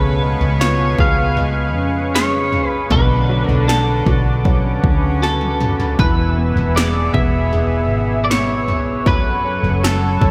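A melancholic, longing pop ballad at 78 BPM in 4/4, this dreamy excerpt is soaked in a moderate cathedral reverb, cut from a longer piece and moving through C#7, Bm, E and F#m. An electric guitar at the edge of break-up carries the melody, bright and twangy with a slightly broken-up, compressed bite, sitting up front and dressed in lush chorus and analog delay. Beneath it, a rich studio cello section plays a second line with a nasal, reedy gut-string tone in a period style. A clear grand piano supplies intimate accompaniment with audible action noise and long sustain, while a smooth sawtooth analog pad holds sustained chords with a soft attack, a moving notch and chorus. A woody fretless electric bass anchors the low end with a dark, round, hollow-body sound, and 80s electronic pad drums enter at 0.4 seconds with a punchy kick and a gated snare and toms, adding a drum fill from 5.2 to 6.0 seconds.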